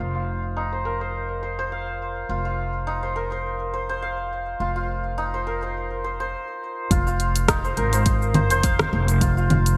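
Warm and hypnotic, this organic downtempo excerpt with a light 16th-note swing pairs shimmering hammered santur arpeggios, softened by a low-pass filter and digital delay, with a woody, thumpy pizzicato upright bass on gut strings that pumps under tube saturation, both sitting up front over a layered deep house kit of cabasa, congas, dark filtered hi-hats and rim clicks. The music halts briefly at 6.3 seconds before a deep electronic kick joins at 6.9 seconds as the harmony moves from Ebsus2/F to Fm7, all set in light studio ambience with a bright 1980s-style digital sheen.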